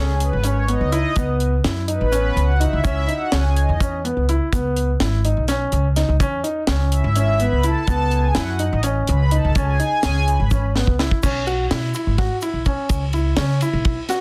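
Driving along in 7/8 at 250 BPM counted in eighths with a straight feel, this brooding progressive instrumental in C# minor is cut from a longer piece and circles around C#m7, B7/C# and C#madd9 before shifting to Bsus2 near the close. A deep reggae drum kit sits up front with dark cymbals, a high-tuned snare and a tight kick, playing kick, snare, hi-hat, ride, crash and toms, and it throws in a fill from 10.5 to 11.2 seconds. A pizzicato upright bass with steel strings gives a woody low line beside the kit, while a polished baby grand piano plays present arpeggios in its middle register throughout. A chorused pulse-width synth pad adds a shimmering, retro, detuned voice with a slow attack and sub octave, sounding in two stretches and bathed in plate reverb. A very quiet, grainy tube shaker adds a bright live-room texture beneath, and the whole mix carries light reverb and a dense, heavily limited modern master.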